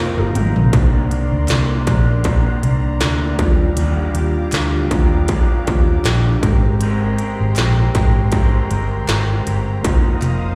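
A wistful, mellow stretch of indie bedroom pop, cut from a longer piece, opens at 0.0 seconds with a dark, slightly broken-up electric guitar through a small old amp, lo-fi and picked, wrapped in lush chorus, warbly pitch drift, plate reverb and slapback echo. Alongside it sit a worn, slightly out-of-tune tine electric piano, lightly overdriven and tucked in the background as if through built-in speakers, and a smooth, detuned sawtooth analog pad with a slow attack that holds sustained chords under chorus and plate reverb. A drum fill runs to 0.7 seconds on an industrial kit that is electronic and produced, with a distorted kick, clanging snare and crisp hats, tape-warm and re-recorded in a large room, sitting up front beside a round, foam-muted fingered electric bass that is dark and amped. From 1.5 seconds, very quiet group handclaps add a human, small-room touch over the lightly swung groove. 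The harmony drifts from F7sus4 through Cm9, Ebmaj9 and Abmaj9 before returning to F7sus4, and the whole mix comes across like a live gig heard through the venue's PA in a recital hall.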